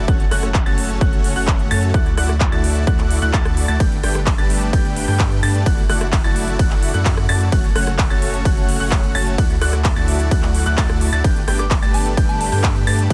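A punchy, overdriven electronic kick sits up front at 129 BPM, pushing this euphoric, anthemic festival progressive house passage in D major while a crisp, overdriven big-room kit adds handclaps, hi-hats, ride and rim clicks, and a deep, saturated sub bass pumps beneath a huge, detuned supersaw riff carrying dub echo. A brilliant grand piano plays high arpeggios, and a lush, phased unison pad holds sustained chords in the background, all pumping to the sidechain over a progression that moves through F#m, Dadd9 and Gadd9. Near the end, at 11.6 seconds, a soft, pure FM bell melody briefly appears with chorus and echo, in a dry, close mix.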